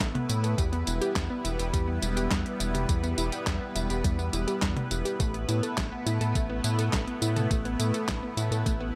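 Synthwave at 104 BPM with a nocturnal, driving mood, this nine-second cut from a longer piece sets a lush, detuned unison pad with chorus, phaser and sidechain pumping over a punchy pluck arpeggio with digital delay, a deep, round, up-front analog bass that also pumps, a thumpy, tape-tinged electronic kick and a detuned 8-bit drum machine of handclaps, hi-hat, snare, tambourine and toms, all in light reverb as the chords move from Asus2 to Em and back to Asus2 at 5.2 seconds.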